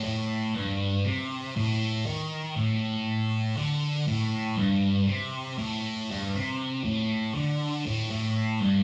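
Set in a straight 4/4 feel, this short rock passage, cut from a longer piece, carries a trippy, mysterious mood. A thick fuzz electric guitar plays solo from 0.0 to 8.8 seconds, picked in a low register. Its tone is bright and heavily distorted, with a phaser adding a swirling, psychedelic color. The part is double-tracked and sits up front, giving it a dense, doubled weight. A wet, large studio reverb and a live, single-room recording surround it with a roomy ambience that deepens the hazy atmosphere.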